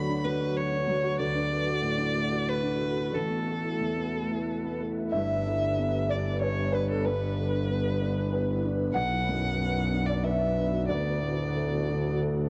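Neoclassical piano and strings in D major, intimate and hopeful, moving at 93 BPM in a rubato 3/4: a clear, smooth solo violin with light vibrato, colored by cassette tape and analog delay, carries the melody up front over a dark, mellow concert grand with deep bass and long sustain, while an ethereal, airy pad of detuned sawtooth and triangle tones with slow attack and ensemble chorus holds sustained chords in the background, and a rich bowed double bass enters at 5.1 s, the whole captured in a small, lightly reverberant room on a home cassette recording.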